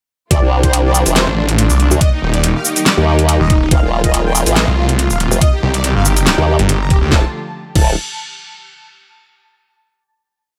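An up-front mix set in a digital ambience carries this heavy, aggressive wobble dubstep piece at 141 BPM in D phrygian, moving at half-time with a light swing through a drop over Dm, Eb, F and Cm before settling on a final Dm chord at 7.1 seconds. A knocking, tape-warm kick and a layered kit with a huge snare, metallic hats, shaker and crash drive the beat. A chorused, overdriven formant-sweep wobble bass shifts its wobble speed, and from 1.3 seconds a snarling, detuned saw bass answers it with chopped, distorted phrases. Above them, a soft, smooth supersaw repeats a sixteenth-note riff over a pedal note through dub echo, while dark, veiled muted strings hold sustained chords in the background.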